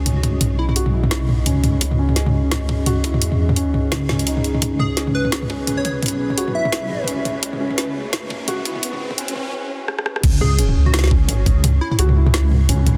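A dense, heavily limited modern mix with light reverb carries this tense, cinematic half-time drum and bass passage, swung on the 16ths. A dark analog pad holds slow-attack, sustained chords with chorus and sidechain pumping, while a felt-muted upright piano plays soft, intimate arpeggios through a low-pass filter and tape echo, its filter sweeping across the build-up. Up front, a deep, wobbling sawtooth bass with chorus anchors the low end beneath a knocking, overdriven electronic kick and a layered kit with a woody snare, bright hats, rim clicks, toms and crash, both re-recorded in a small room. A punchy, catchy square-wave unison lead with a moving notch and tape echo appears in brief phrases, and a riser enters in the background at 6.9 seconds. A drum fill closes the build-up just before the drop at 10.2 seconds, where the pad stops and the lead returns over bass, piano and drums.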